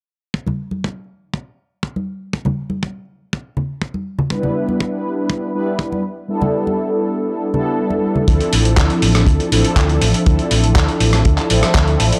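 A mellow, brassy synth brass, detuned and dark with chorus, phaser and a cassette-tape haze, pumps against the sidechain and rides up front over a tight, dry kick and bright close congas in this cosmic, sensual nu-disco cut at 121 BPM in D dorian, moving through Em7 and A9sus4. The kick drops out from 6.3 to 8.3 seconds. At 8.3 seconds the music shifts to Dm9 as a round, hollow-body fingered electric bass and a gritty, overdriven sampler-style kit of handclaps, hi-hat and rim click enter, all caught in a dry, gritty hardware sound with light reverb.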